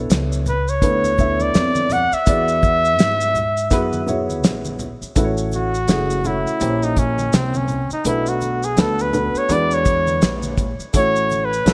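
Jazz-hop hip hop at 83 BPM in A major, cut from a longer piece, with a swung 16th feel and a cool, relaxed mood: a dark baby grand piano with audible action noise and a woody, pizzicato upright bass on gut strings carry the chords from the start, a cloth-damped drum kit with a fat snare, tight kick and gated reverb is joined by quiet, compressed and saturated maracas and congas, and a veiled, breathy bucket-muted trumpet with light vibrato enters up front at 0.5 s before taking a solo from 5.2 s, framed by light small-room ambience and a bright 1980s-style digital production.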